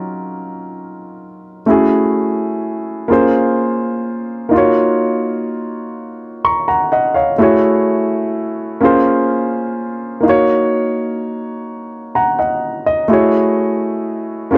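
A solo grand piano sits up front in a small, dry room, its intimate and natural tone carrying audible action noise in a close 1970s-style studio sound. This sultry, late-night R&B piece in Eb minor moves slowly at 42 BPM in a straight 6/8, cycling through minor ninth chords (Ebm9, Gbm9 and Bbm9) across a range from Gb3 to Db6. The 14.6-second clip is cut from a longer piece.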